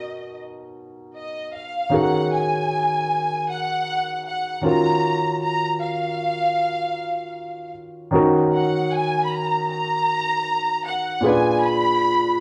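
A symphonic violin section and a baby grand piano begin together at 0.0 s, setting a smooth, silky soul mood at a relaxed 77 BPM in 4/4 with a straight feel, in Eb minor. The violins carry the melody with lush, bowed ensemble tone, a biting, focused vibrato and a smooth top, sitting up front in the mix. The piano plays the accompaniment with a warm, polished and present sound, also placed up front, moving through rich harmonies from Bmaj9 to Ebm7 and Ebm9. Around 8.1 s the music shifts to a new passage that returns to Ebm7 before landing on a tense Bb7b9 at 11.2 s. A large studio reverb gives the pair the feel of musicians playing live in one room, and the 12.4-second clip is cut from a longer piece.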